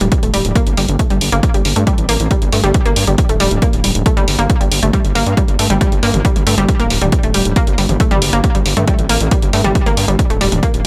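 A straight 4/4 pulse at 137 BPM drives this dark peak-time techno excerpt in G minor: an analog drum machine's hi-hats and toms pump with sidechain from the start, and a punchy, tape-warm electronic kick enters at 0.1 s. Underneath, a gritty, aggressive synth bass of saturated sawtooth and sine tones with oscillator sync and a resonant filter pluck sits up front, also pumping against the kick. Over a G5 chord, a round, detuned analog pluck riff with a bright tone, a fast attack and decaying notes repeats through chorus, tube saturation, cassette tape color, sidechain pumping and delay, while light reverb holds the mix together.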